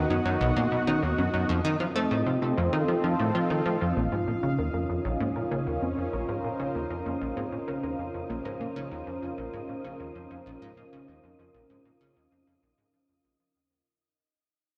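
Cosmic and hypnotic, this ambient, sequencer-driven space music moves in a straight 4/4 and is cut from a longer piece. A punchy, funky analog bass riff sits up front with a plucky, fast-attack sawtooth bite, its lush chorus and analog delay giving it an evolving shimmer. Beside it, a sweeping resonant pad holds sustained chords, its detuned, full-bodied tone opening through a slow filter swell with chorus. In the background, a warbly, dusty pluck traces nasal, lo-fi arpeggios through chorus and analog delay until 8.7 s. An airy, breathy wind-like tuned noise texture drifts behind it all with a long release. The mix is dark and set in a wet scoring-stage reverb, and the harmony moves from B to F7 before settling on Bbmadd9 at 4.0 s, where the music begins to fade out.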